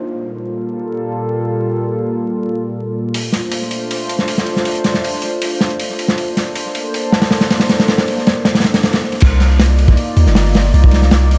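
Frenetic yet nostalgic, this short cut of drum and bass and jungle opens on a warbling, detuned tape-like pad holding sustained chords through chorus and its own reverb, with a lo-fi 12-bit sampler grit. At 3.1 seconds a crunchy, saturated breakbeat kit arrives up front, dark-cymbaled with a tight kick and rolled-off top, trailing dub echo. At 9.2 seconds the drop brings in a deep, sine-toned 808-style bass with a fast attack and long decay, all set in an echo-heavy mix with plate reverb, small-room ambience and vinyl crackle.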